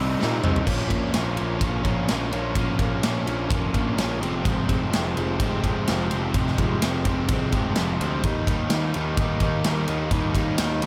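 Quiet-loud alternative rock at 127 BPM in 4/4, cathartic and dark, this excerpt opens on Cm7 with a dark, compressed, double-tracked overdriven guitar riff up front and a growly fuzz-drenched picked bass. A drum fill enters at 0.2 seconds from a big, punchy acoustic kit with bright cymbals, and the music then drives through Bbm, Fmadd9 and Eb, with a slightly broken-up guitar playing arpeggios in the background from 0.7 to 8.2 seconds, all set in light reverb and studio ambience.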